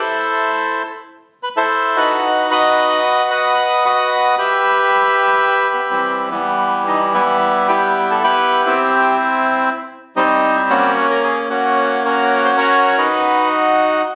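A compressed phone recording made in the room captures a dramatic, passionate tango fragment in a free rubato feel, where a reedy, up-front solo bandoneon carries the whole 14 seconds, moving through shifting minor-key harmonies from A minor and B to E minor, then on to C, F# and back to B as it is cut from a longer piece.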